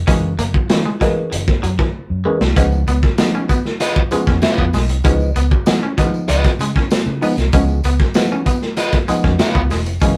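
Funk excerpt with a gritty, playful mood, driven by a crunchy, saturated breakbeat kit up front and a round, punchy foam-muted fingered bass, with a twangy clean guitar riff and phaser-treated muted clav stabs, while a jingly tambourine sits in the background from 2.6 s after a drum fill, and a bright overdriven guitar joins at 3.8 s in a rough rehearsal-room sound.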